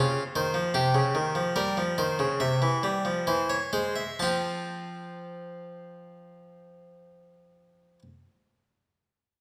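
In a straight 4/4 that slows over the first 4.2 seconds, this serious, driving baroque-style two-part invention is played by a solo harpsichord, tuned slightly low at A4 = 437 Hz. The instrument sits up front with a plucked, nasal, bright tone, thin across its range from C3 to A5, and harmonies move from a rootless G7 colour through C7sus4 to C and then F. A wet recital hall reverb surrounds the playing in this short section cut from a longer piece.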